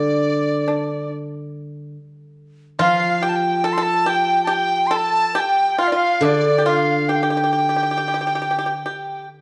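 Chinese traditional chamber music for a small ensemble, this short excerpt is graceful and pastoral, moving in a loose rubato around 70 BPM in 4/4. A large dizi carries the melody with a bright, reedy, buzzing bamboo tone, tongued and straight, sitting above the rest of the group. A single bowed erhu shapes a second line with a clear, biting, earthy voice, light vibrato and sliding portamento. The pipa, plucked with fingerpicks, adds its own second line that sounds dry, percussive and up front, while a steel-string zither, also fingerpicked, supplies low accompaniment with a ringing, silvery shimmer before dropping out at 8.8 seconds. The ensemble sits in a moderate recital hall ambience, and the overall production leans dark.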